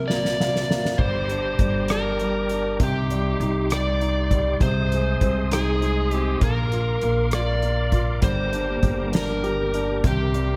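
A drum fill on soft mallets and a brief grand piano flourish open this dramatic, aching six-eight pop ballad excerpt, where a dark, overdriven slide guitar sings the melody through analog delay over polished piano chords, a woody pizzicato upright bass, a clear tonewheel organ swirling with fast rotary speaker, and a boomy, dark-cymbaled kit, all soaked in dreamy reverb until a very quiet fingerpicked acoustic guitar slips in at 8.2 seconds.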